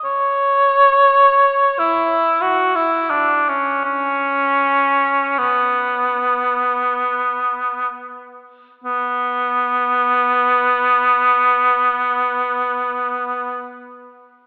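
A lone cor anglais opens this meditative, yearning classical fragment, its mellow voice shaped by soft attacks, light vibrato and a smooth top as it moves freely and expressively in unmeasured time. The line slows through its first passage until 8.8 s, where a new section begins, and the phrase is cut off at 13.8 s. Held up front, the solo sits in a wet, lingering church or concert-hall reverberation, heard through a thin, telephone-like sound.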